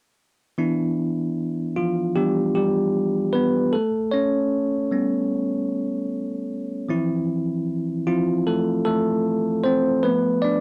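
A homespun cassette recording with a short, close booth ambience frames this hopeful, emotional pop excerpt at 76 BPM in a straight 4/4, tuned to A4 = 441 Hz. A bell-like tine electric piano plays alone from 0.6 to 10.6 seconds, its bright, clean tone sitting direct and up front with a touch of tape colour as it moves through Em7, A7, Fmaj7/E and lands on F6 at 10.1 seconds.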